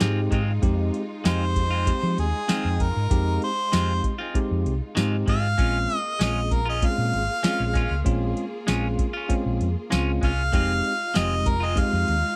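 A dry, close 1970s-style studio sound frames this brooding, soulful straight-eighth soul blues in F minor at 97 BPM, where an up-front harmonica with overdrive and tape echo enters at 1.3 s to carry the melody with light vibrato and scooped notes over a vintage rhythm box whose deep kick, crisp snare, metallic hats and tambourine are pushed through overdrive, a round hollow-body fingered bass, twangy clean guitar stabs, a bell-like tine electric piano and a lush string section sustaining chords in the background as the harmony moves from Fm7 to Bbm7 and back.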